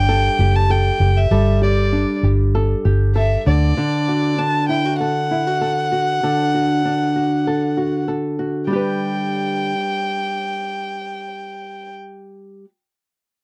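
Easy-going and sunny, this short pop excerpt moves at 98 BPM in G major, with a bowed violin singing the melody in an intimate, soft-attack, sul tasto voice with light vibrato over a small, dark-toned fingerpicked nylon-string guitar. A round, foam-muted vintage electric bass sits up front underneath them until 3.7 s, and the guitar plays on to 12.7 s. The sound is dry and close, like a 1970s-style studio recording, cut from a longer piece.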